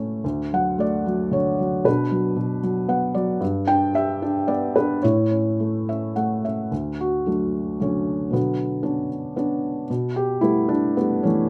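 A lilting 3/4 pulse drifts with rubato at roughly 106-117 BPM, giving this classical excerpt for solo piano a relaxed, breathing sway. The mood is hopeful and sunny, set in D major, and the passage is cut from a longer work. A felt-muted upright piano carries everything alone, ranging from D2 up to G5, with a soft, mellow, intimate tone and audible action noise that keeps it close and natural, placed up front. The harmony moves from D through Bm, G and A before the opening phrase returns at 6.7 seconds, now colored by Bmadd9 and Gadd9/B. Brief piano fills, the first at 2.6 seconds, link the phrases, while a moderate studio ambience with a short decay surrounds the instrument.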